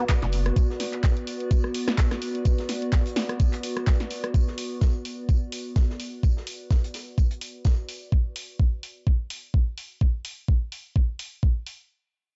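A gritty, raw acid house excerpt opens on a warbling, detuned, lo-fi pad pumping through chorus, phaser and its own reverb until 8.1 s, as a thumpy, up-front electronic kick, a punchy analog drum machine with claps, rim clicks and hats, and a saturated, rolled-off breakbeat kit in the background arrive together, with a thick, deep sub bass note pumping briefly from 0.2 to 0.5 s, and the kick and drum machine carry on past the pad in a dark, lightly reverberant mix.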